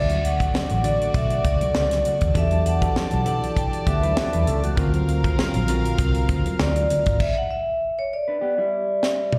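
Lush and warm, this short cut from a longer piece is 1970s-style soul at 99 BPM in D major, with a light swing on the sixteenths and chords moving from Dmaj7 through Em11 to D7alt. A ringing, metallic vibraphone played with medium hard mallets carries the melody, its slow motor vibrato giving it a gentle shimmer, while a soft-attack, floating string section plays a distant second line and a bell-like tine electric piano adds bright, clean accompaniment, all three touched with plate reverb and slapback echo. Underneath, a round, foam-muted fingered electric bass sits up front beside a tight funk drum kit with a high-tuned snare, and very quiet, thick-skinned congas sound far back in the room. A dark, clean, fingered electric guitar riff with slapback echo joins at 3.9 seconds. At 7.2 seconds the band stops, leaving the vibraphone, guitar and drums, and a drum fill closes the passage at 9.0 seconds. 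The whole performance is heard as a live gig through the venue's PA, with moderate club reverb and a recital hall ambience.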